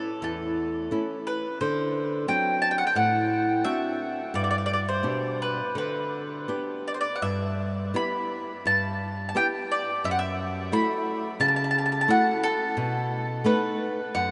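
A round, double-strung picked mandolin carries the mournful, longing melody of this fado-style ballad in E minor at a rubato 87 BPM, while a fingerpicked flamenco guitar accompanies close up, both bathed in a huge, vast, echoing reverb with a softened top end throughout the 14.3-second excerpt.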